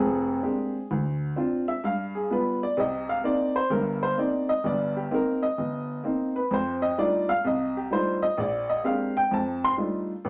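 A lone upright piano opens on a Bb13 chord and carries this short solo jazz excerpt from start to finish, lasting about 10.3 seconds. The mood is playful yet sophisticated, set in a swung 4/4 with a lilting eighth-note feel. The instrument sounds woody and a little boxy, sitting up front in the mix, and it spans from deep F1 bass notes to bright C6 in the treble. Rich extended harmony moves through Dm9, G7 and Cm7, then settles on F13 at 6.5 seconds before touching Bb13 again and closing on F13. A wet studio reverb with a short decay wraps the piano in a snug, intimate room.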